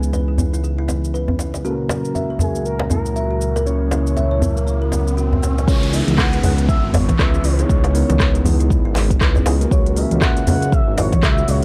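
Warm and earthy, this excerpt of afro house moves at 119 BPM in C# dorian with a swung sixteenth-note feel, built over C#m7 and F# harmonies. An expressive, dark sawtooth synth lead carries the melody through lush chorus and tape echo, while a detuned analog pad holds sustained chords in the background, its filter sweeping through the opening until the drop at 5.7 seconds. A mellow tine electric piano adds filtered stabs from the back of the mix, and a woody, ringing kalimba plays thumb-plucked arpeggios, both colored by tape echo and sidechain pumping. Up front, a smooth sawtooth-and-square synth bass with vibrato anchors the low end, joined by a close, soft-handed djembe and an afro-pop kit of smooth hats, handclaps, rim clicks, shaker, toms and crash. A riser builds into the drop, where a deep, tape-colored electronic kick enters and drives the groove. The sound is dry and gritty, with little reverb, giving the hardware-made mix a tactile, intimate presence.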